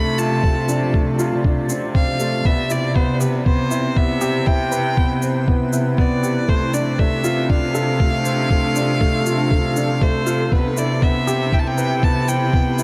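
A light studio reverb frames this tender, hopeful piano and strings electronica excerpt in C major at 119 BPM, with a muffled, pitched-down, thumpy kick up front and an overdriven electronic shaker entering at 0.2 seconds. A dark, woody upright piano riff and a rich, smooth solo violin melody with vibrato, both carrying tape echo, float over a soft-attack, sul tasto cello section playing the bass on C3 with sidechain pumping, while a granular, cloudy pad of slow-attack chords also pumps and sits in the background with its own reverb. The harmony moves from Dm7/C to Cmaj7, F6/C and back to Cmaj7.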